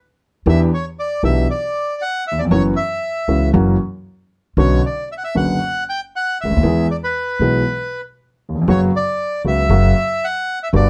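Closely recorded with light reverb, this sultry, tense tango fragment, cut from a longer piece, moves at a rubato 117 BPM in 4/4. A reedy, airy bandoneon carries the melody up front over a deep-voiced, short-sustained grand piano accompaniment and a woody, thumpy pizzicato upright bass, all three playing from 0.5 to 10.9 seconds through Em7, F#7 and Bmadd9 harmonies that come to rest on F#.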